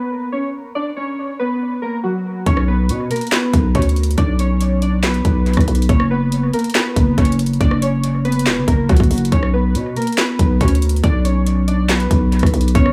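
Dry and echo-heavy with a small-room feel, this melancholic, dark trap excerpt at 140 BPM in half-time opens with warbling, detuned lo-fi synth keys under a filter sweep, chorus and dub echo carrying the B harmonic minor melody alone, before a growling, buzzy 808-style bass and a trap kit of hard-clipped kick, sharp snare, metallic hats, rim clicks and handclaps with its own dub echo arrive at 2.5 seconds, moving over Bm and F#5 until the chords give way at 9.3 seconds.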